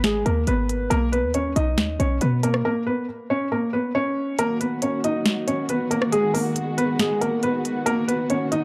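Hard-hitting, dark trap hip hop in Eb minor at 138 BPM with a half-time feel, this excerpt opens on a soft, felt-muted upright piano melody with audible action noise and digital delay. Beneath it, an up-front electronic kit plays crisp hats, finger snaps, rim clicks and a sharp, overdriven snare. A punchy, tight 808-style bass anchors only the first 2.6 seconds before a break, and at 4.4 seconds a lush, woody symphonic string section enters with bowed, vibrato-laden sustained chords beneath the mellow piano, all set in light reverb and small room ambience.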